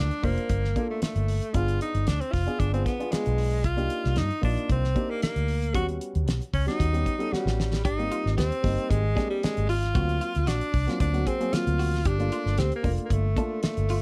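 The recording has a dark, warm sound, set in a small room with light reverb, and this short excerpt of electric jazz fusion feels funky and intense in a straight four. Up front, a bright, forceful tenor saxophone carries the solo melody with vibrato, scooped notes and a smooth top, its line given a slapback echo. A foam-muted vintage electric bass, round and amped, sits prominently beneath, while a mellow baby grand piano supplies accompaniment with short sustain. The damped 70s drum kit is dry and mid-forward, with a fat snare and tight kick, and it plays a fill from 7.3 to 7.9 seconds. At 7.8 seconds a slightly broken-up electric guitar enters in the background with compressed, picked stabs soaked in lush chorus, as the chords move from Gm9 through Abmaj7 and D7alt back to Gm9.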